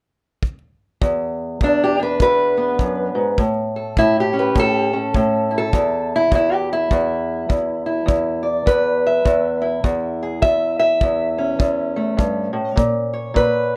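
Acoustic country blues with a rollicking, laid-back swing, where a dark, boxy fingerpicked parlour steel-string guitar carries the melody up front from 1.0 seconds over a tight, brushed kick drum that enters at 0.4 seconds, all set in a small room with moderate reverb in this snippet cut from a longer piece.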